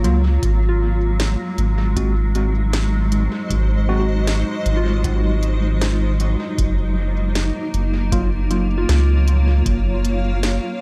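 Spacious and peaceful, this short ambient dub excerpt moves at 78 BPM in a straight 4/4, sitting in Ab mixolydian with a shift from Ab7 to Gbmaj7 at 6.6 seconds. A cloudy, evolving granular pad holds sustained chords throughout, its detuned unison tone blurred by a slow attack, long release and built-in reverb. Beneath it, a round, up-front sub bass with a triangle and square wave character carries the low end, while a deep, overdriven analog kick enters at 0.4 seconds and sits very quietly in the mix. The organic electronic kit adds a woody snare and crisp hi-hats, dressed in studio reverb and dub echo. In the background, a worn, slightly out-of-tune tine electric piano throws dub-echoed stabs until 8.7 seconds, and a pure, gentle FM bell with chorus and echo spins decaying arpeggios from 0.7 seconds to the end.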